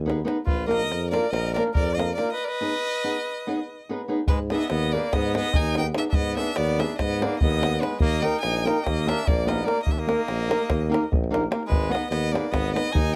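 Closely miked with light reverb and fine detail, this bittersweet, virtuosic Balkan wedding-band piece in 9/8 is cut from a longer performance and keeps speeding up throughout. A solo tuba sits forward in classical style with the bass line, a dark fingerpicked flamenco guitar plays up front as accompaniment, and a tight, dry davul drives the percussion. A single bowed violin carries a clear, focused melody with vibrato, while a bright classical trumpet adds a second line with light vibrato, and a break arrives at 2.4 seconds before the music moves on at 4.3 seconds.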